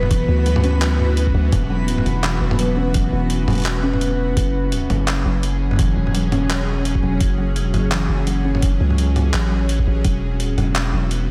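A deep, mellow 808-style bass sits up front in this dark, cinematic half-time drum and bass excerpt at 169 BPM, its long sine tones hitting with a fast attack and then decaying. A thumpy, pitched-down electronic kick and a gritty, compressed boom bap kit of handclaps, hi-hat and toms carry a swung half-time feel; both were re-recorded in a large room, and the kick drops out from 3.7 to 4.4 seconds. Above them, a woody kalimba plays ringing arpeggios with vintage 12-bit sampler grit and tape echo, while a tense, string-like bowed drone holds sustained chords, its detuned sawtooth layers colored by vibrato, phaser and sidechain pumping. A reversed, granular swelling texture adds a dreamy shimmer until 4.4 seconds, where the harmony moves from E5 to F#madd9 before returning to E5 at 10.0 seconds. The whole mix is soaked in a moderate church reverb, giving it a hazy, cavernous depth.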